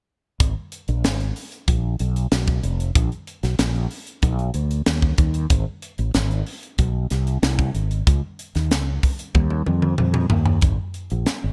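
A straight 4/4 groove at 94 BPM drives this bittersweet, nocturnal fragment of polished 1980s jazz-funk pop in G# dorian, where a warm, direct fretless electric bass with analog chorus and a crisp, airy fusion drum kit of hi-hat, toms, punchy kick and high-tuned snare both sit up front in a dry, bright digital mix, until a drum fill from 9.3 to 10.6 seconds leads toward the close near 11.5 seconds.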